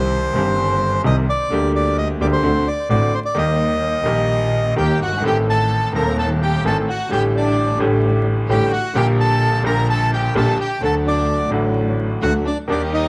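A passionate, sultry tango excerpt moves at 129 BPM in 4/4 with a rubato feel, captured through close, detailed microphones with light reverb and a layer of vinyl crackle. A reedy bandoneon carries the melody up front, its boxy small-room tone trailed by tape echo, while a bright concert grand piano supplies brilliant, present accompaniment reaching down into deep bass. Beneath them a single bowed double bass sits distant, expressive with vibrato and portamento. At 4.8 seconds a lush studio violin section enters with a smooth, even second line, and at 12.7 seconds a soft-attacked string section adds brief bowed stabs in the background. The harmony wanders from C minor through G minor, D7, E-flat and a diminished chord before settling toward D.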